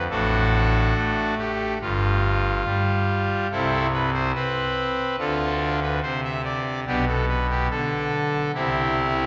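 A deep church reverb surrounds this short excerpt, with a long tail of about 3.6 seconds and a top end that is gently rolled off. It is a reverent, serene classical chorale for solo pipe organ, played on a trumpet stop that sounds brassy and bright, set up front in the room. The tempo sits around 71 BPM in 4/4, taken with a flexible, rubato feel. The organ spans from a low G1 up to E5, its romantic voicing giving the chords a full, ceremonial weight. The harmony moves from D over A through a brief chordless moment to Cmaj7, Dm and Bm7, settling on C near 8.5 seconds before the fragment ends at 9.3 seconds.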